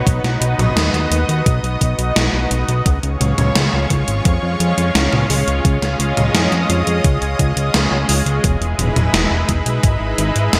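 Synthwave at 86 BPM in 4/4, nostalgic and cinematic, cut from a longer piece, with a silky, detuned analog string pad holding sustained chords from B through C# to Emaj7 at 8.4 seconds, its ensemble chorus and sidechain pumping giving it a breathing shimmer. Underneath, a fat, wave-folded analog bass sits thick and saturated up front, while a thumpy, overdriven electronic kick and a gated 80s digital drum machine of hi-hat, snare and toms, its snare drenched in gated reverb, drive the groove. The sound is bright 1980s-style digital production set in a moderate plate reverb.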